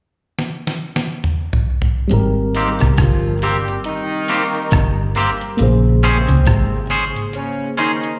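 A round, punchy muted bass, dark and up front, anchors this tender, romantic lovers rock reggae, cut from a longer piece and moving at 69 BPM in 4/4 with a swung sixteenth feel in Ab major. A clean 12-bit drum machine opens with a fill at 0.4 seconds, its thumpy kick and fat snare joined by hi-hat, rim click and toms. At 2.1 seconds the harmony settles on Abmaj9, later shifting to Bbm9 at 5.6 seconds, as a mellow FM electric piano brings a soft, warbling accompaniment treated with chorus, tremolo, dub echo and slapback echo. A compressed twelve-string electric guitar plays a riff in the background through spring reverb and dub echo, while a bright, twangy guitar adds picked stabs with spring reverb and slapback echo. A horn section with vibrato carries a tight second line with slapback echo, and the performance comes across as a live gig heard through the venue's PA, with light club reverb.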